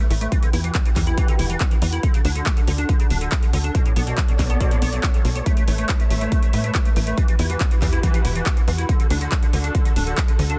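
A dense, heavily limited modern master set in digital ambience carries this bittersweet, driving uplifting trance excerpt, where a punchy, up-front electronic kick and a big-room dance kit of handclaps and metallic hats pound beneath a tight sawtooth sequencer bass with a ring-modulated filter pluck, a squelchy, resonant acid bass arpeggio treated with chorus and digital delay, and bowed studio strings with vibrato and portamento holding sustained chords under a filter sweep, with the sequencer bass, acid line and strings each pumping to the sidechain.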